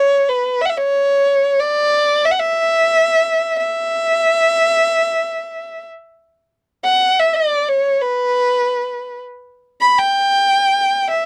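A dark, expressive solo violin, bowed by one player up front with vibrato, portamento and a smooth top between B4 and B5, carries this longing, soulful Turkish passage in free time in E makam nikriz, cut from a longer piece, shifting to a new section at 6.2 seconds in a dry, close 1970s-style studio recording with little reverb.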